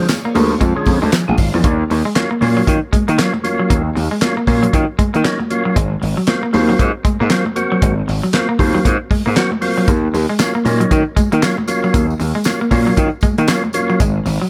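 Set in a light reverb, this sly funk clip rides a swung sixteenth feel, led by a gritty, overdriven slap bass and a dry 70s drum kit with a fat snare, tight kick, hi-hat and handclaps up front, alongside a twangy, slightly broken-up picked guitar riff, mellow organ stabs spinning through a fast rotary speaker and chorus vibrato, soft high-tuned congas, a shimmering, warbling string machine whose violin chords sustain only until 1.6 seconds, and a very quiet jingly tambourine that drops out and returns at 9.9 seconds.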